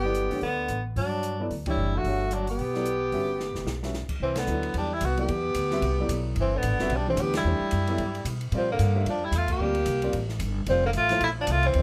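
Light reverb surrounds this searching, hypnotic modal jazz excerpt in G lydian, swinging at 222 BPM, where a warm, up-front tenor saxophone carries the melody with light vibrato and scooped notes over a clear alto saxophone second line, a natural, short-sustain baby grand piano accompanying through Gmaj9, Cmaj9 and Bbmaj9, a woody, thumpy pizzicato upright bass on gut strings, and an airy, polished jazz kit with dark cymbals and a boomy kick that enters at 0.1 seconds, with a band accent at 1.6 seconds and a drum fill at 3.4 seconds.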